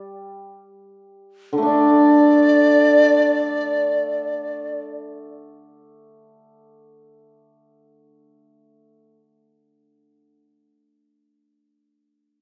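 Heard from further back in a reverberant recital hall, this short, festive and graceful passage of Chinese traditional chamber music unfolds in free time, slowing in its opening 1.7 seconds. A shimmering, ringing hammered dulcimer carries the accompaniment throughout in its lower-middle register. At 1.7 seconds a large bamboo dizi enters up front with the melody, its breathy, bright, buzzing-membrane tone slightly unsteady and coloured by tongued notes and vibrato, before it falls away at 4.8 seconds.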